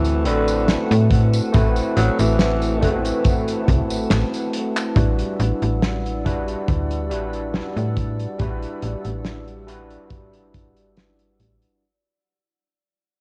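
A hazy, woozy vaporwave excerpt at 70 BPM opens on a breathy, raspy tenor saxophone line with sampler grit and tape echo, heard only until 3.0 s. Beneath it sit a barky, overdriven tine electric piano through a combo amp with chorus, a snappy FM slap bass with tube saturation, a mellow, detuned pad in the background, and a loose indie kit with fat snare, hi-hat, tambourine and handclaps. A punchy kick joins at 1.1 s, and after a drum fill the harmony shifts from Am69 to Em9/A as the music fades out from 5.0 s, all of it soaked in worn cassette-tape pitch drift and small-room ambience.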